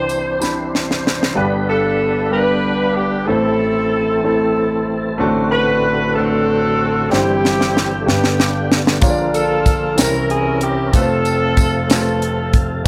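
A moderate studio room gives this slow gospel fragment a roomy glow, with the dry, high-tuned snare, tight kick and hi-hat of the funk kit and the natural grand piano sitting up front. The mood is soulful and uplifting in a straight 6/8. A distant alto saxophone carries the melody in a jazz style, punchy and scooped with vibrato, bathed in plate reverb. Beneath it the piano spreads a warm accompaniment and a full, clean tonewheel organ holds sustained chords through a slow rotary speaker and chorus vibrato. A light-vibrato horn section joins the melody at 1.7 seconds in pop-style ensemble voicing, also under plate reverb. The drums play a fill at the start, drop away, then return with another fill at 7.1 seconds, and a bright, jingly tambourine rejoins at 9.0 seconds as the chords move through a colourful turn before settling.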